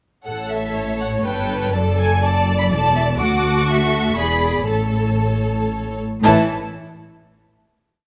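A quick, spirited classical-period movement for string orchestra in A major, this short complete piece moves in 3/4 at roughly 114-125 BPM with a lively, rubato feel. The first violins carry the melody up front, singing with vibrato and expressive portamento, while the second violins add a focused, rich line of chords in the rhythm of the tune and sustained chords. The violas supply a clear, smooth counter-melody and sustained chords, and the cellos hold a lush sustained bass with passing notes, doubled by the double basses with their soft attack. All five sections play together from 0.3 s, with the harmony moving from A through D and E7 back to A. The violins and cellos sit close in a studio sound, all bathed in moderate recital hall reverb, and the piece closes on a final chord at 6.2 s.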